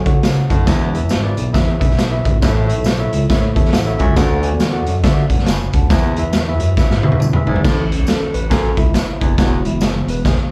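Heard as a live gig through the venue's PA with a touch of club reverb, this short slice of uptempo 1960s-style soul moves at 138 BPM in a swung 4/4, bright in A major and joyful in spirit. The raw garage drum kit sits up front with a punchy kick, a medium-tuned snare, gritty saturation and a rolled-off top, its small, pumping room framing crash, hi-hat and toms. Underneath, a smooth synth bass built from sawtooth and square waves holds a sustained, evolving line with vibrato, while a jingly tambourine rattles in the background. A worn, slightly out-of-tune tine electric piano comes through its built-in speakers, mellow and lightly overdriven with slapback echo, and a raspy baritone saxophone adds a distant, roomy riff with its own slapback echo. After a drum fill, the electric piano takes a solo from 7.6 seconds to the cut at 10.5 seconds over chords moving between A and E.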